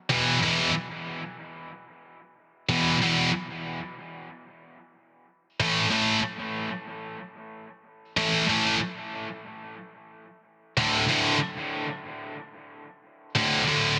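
Swaggering and powerful, this rock fragment cut from a longer piece features a lone heavy high-gain electric guitar that plays in free time from 0.1 to 13.9 s. The bright, picked, double-tracked guitar sits up front with distortion and analog delay, moving through E5, A5 at 5.6 s and D5 at 10.8 s in its low register. A moderate studio reverb and a dense, heavily limited modern master round out the sound.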